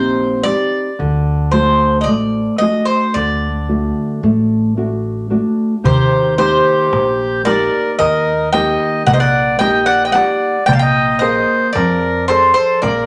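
Greek folk from a bouzouki band, wistful and dark, moving at 112 BPM in 9/8 with a straight feel through chords of Eb6, D, Eb and Bb7. The bright, metallic double strings of the picked bouzouki carry the melody up front over a full-bodied, thumb-plucked nylon-string guitar with audible finger squeak and a woody pizzicato upright bass. At 5.8 s a reedy, hollow accordion joins with a second line while a clay-shelled darbuka sits in the background, all in a wet studio reverb, in this passage cut from a longer piece.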